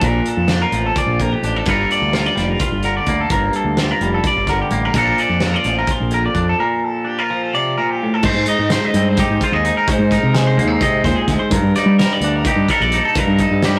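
Moving in a straight 7/8, this playful, intricate slice of math rock and midwest emo pairs two clean, twangy electric guitars, one warm and playing arpeggios while the other, bright and compressed, carries the accompaniment, over a round, overdriven fingered bass and a loose indie drum kit with a fat snare, punchy kick and dark cymbals, captured as a rough rehearsal-room recording with stone-room reverb and saturation, with a break at 6.6 seconds before the harmony shifts into a new section at 8.2 seconds.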